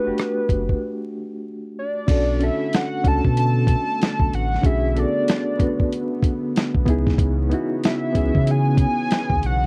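Soulful and introspective, this short cut from a longer piece rides a neo-soul and R&B groove with a swung sixteenth-note feel. A hollow, woody square-wave lead carries the melody up front, thickened by chorus, vibrato and a slapback echo. Beneath it, a reedy electric piano, lightly overdriven and shimmering with fast tremolo, plays the accompaniment. A deep sine sub bass doubled at the octave joins a gritty, compressed sampler-style drum kit with a thumpy kick, medium-tuned snare, rim click, hi-hat and crash, with a break from 0.8 to 2.1 seconds. At 2.1 seconds a smooth, detuned analog pad with chorus enters in the background with sustained chords as the harmony moves from a rootless Em11 to Bm9 and then C#m9. The dry, close 1970s-style studio sound, with little reverb and a layer of vinyl crackle, lends the recording an intimate, vintage character.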